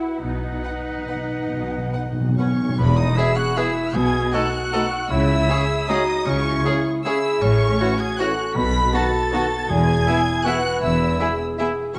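A dark, warm orchestral sound on a scoring stage with moderate reverb opens this excerpt from an elegant, sweeping classical ballroom waltz in E major, moving in 3/4 at 131-171 BPM with a rubato feel. Close, expressive violins carry the melody with vibrato, joined by a pure, bright flute section and a mellow, distant cor anglais as second lines, while a second, lush violin section and a rich viola section sit in the background. Beneath them, cellos and a dark double bass section anchor the bass with portamento, and a mellow French horn section holds sustained chords. A clear, roomy clarinet touches a single B4 early on, and round, soft-mallet timpani on calf heads play a fill from 0.2 to 2.8 seconds before returning briefly near 8.6 seconds. From 3.2 seconds a tight trombone section adds sustained chords in the background and a bright, distant trumpet plays stabs. The harmony moves from B to E, then through B7, C#m, F#m7/A and B7 back to E.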